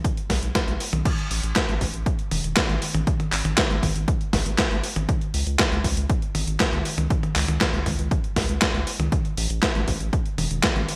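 A steady, straight 4/4 pulse at 119 BPM drives this danceable, nostalgic italo disco excerpt, where a punchy, tape-warm electronic kick with studio reverb sits under a gritty, overdriven sampler-style drum kit of crash cymbal, handclaps, hi-hat, medium-tuned snare and toms, placed up front with gated reverb, while a round, dark analog bass with tube saturation holds the low end from E1 to C#2, all in a bright 1980s-style digital production with light reverb.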